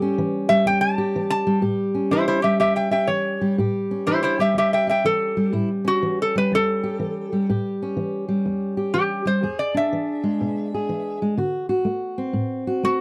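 Acoustic country blues with a laid-back, soulful mood at 123 BPM in a swung 4/4 and A mixolydian, where a metallic, nasal lap resonator guitar played with fingerpicks and a slide carries the melody up front over a dark, fingerpicked steel-string acoustic guitar accompaniment, moving from A7 to E7 at 9.4 seconds and D7 at 11.4 seconds in a dry, close 1970s-style studio sound, cut from a longer piece.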